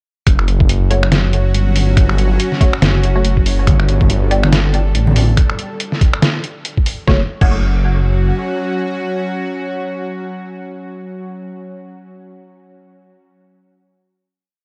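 A half-time beat at 141 BPM with swung 16ths drives this heavy, brooding deep dubstep piece in F# phrygian, built on a thumpy, muffled, pitched-down kick up front and a compressed, sampler-style trip hop kit of snare, finger snaps, hi-hat and crash, with distant, ringing congas echoing in the background from 3.7 to 5.3 s. A dark, detuned, saturated saw bass rumbles up front in chopped phrases through the drop, which moves from F#m to G5 before returning to F#m at 7.1 s for a final chord. Above it, a tense, string-like drone with vibrato and built-in reverb lingers into that closing chord, while sparse, muted dub chord stabs with phaser, subtle chorus and dub echo sit in the background of a dry, dark, warm mix.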